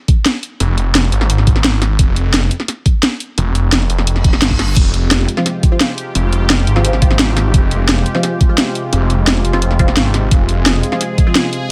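A dry, close mix with little reverb puts the drums and bass up front in this short cut from a dark, aggressive piece of technical drum and bass. A layered electronic kit with a cracking snare, hi-hat and crash cymbal drives the straight groove, underpinned by an overdriven, knocking electronic kick. From 0.6 seconds a snarling, distorted saw bass growls in a low register, detuned and compressed, with a moving notch giving it restless motion. A reverse cymbal rises in the background just before 4.8 seconds, when a bright, full-bodied pad enters with a slow filter swell, resonant ring-modulated tones, chorus and sidechain pumping. Soon after, a muted, deep dub chord stab adds plucked, decaying hits coloured by phaser, analog chorus and digital delay, lending a darker shade to the harmony.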